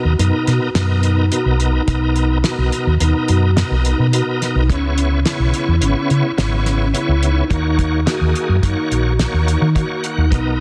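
A dense, heavily limited modern master with light small-room reverb frames this short, driving and bright progressive instrumental, cut from a longer piece and moving at 107 BPM in a straight 5/4. A shouting tonewheel organ carries the accompaniment, lightly overdriven with chorus vibrato and a fast rotary speaker, over chords that move from Bmaj7 to C#m7 at 4.7 seconds and D#m7 at 7.5 seconds. Soft-mallet vibraphone spins mellow, ringing arpeggios with a fast motor vibrato and a boxy small-room character. Up front, a round, hollow-body fingered electric bass gives a dark, amped low end and sits loudest in the mix. The cloth-damped drum kit of hi-hat, kick and snare plays from 0.2 to 10.4 seconds, dry and smooth with a fat snare, tight kick and rolled-off top. Near the close, the organ breaks out with a fill at 9.5 seconds.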